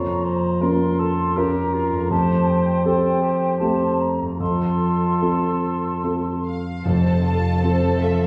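A recital-hall reverb places this tender, moving cinematic film-score fragment further back in the room, where a rubato passage in 3/4 drifts between 72 and 83 BPM in F major. An intimate grand piano with audible action noise and short sustain sits up front with a ringing, thumb-plucked harp in the background, while a mellow solo cor anglais, a bright soft-attacked clarinet and an airy, distant flute ensemble carry second lines until 6.5 seconds. At that point a lush bowed violin section takes the melody, joined by a second violin line, a clear and very quiet chamber cello section on the bass from 6.9 seconds, and a rich viola section near the close.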